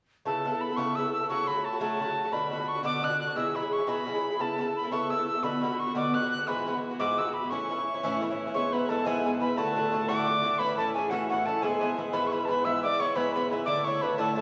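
A reedy metal whistle leads this rollicking Celtic jig in 6/8, its crisp, chiffy attack and airy vibrato sitting up front over a mellow Irish bouzouki, whose picked double strings ring with a metallic edge. At 8.5 seconds, as the harmony moves to a new passage, a bright wooden baroque flute joins with a tongued, slightly unsteady second line beneath the melody. The lively cut from a longer piece ends at 14.4 seconds, bathed in the lush reverb of a church or concert hall.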